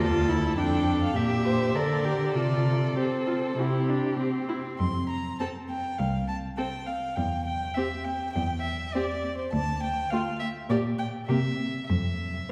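A quick, graceful classical-period string quartet movement in F major at 101 BPM, cut from a longer piece, opens with all four players together over a D minor chord. The first violin carries the lively melody high in its range with a dark, woody tone, light vibrato and soft attacks. Beneath it the second violin plays a warm, expressive second line with vibrato and touches of portamento, sounding somewhat distant. The viola fills in the accompaniment with a focused sound and a smooth top, while the cello anchors the bass with a rich, even, up-front tone. The harmony moves through a cadence on C7 before the inner voices drop out at 11.4 s, the cello at 12.4 s and the melody at 12.5 s. A wet concert hall reverb places the quartet further back in a resonant room.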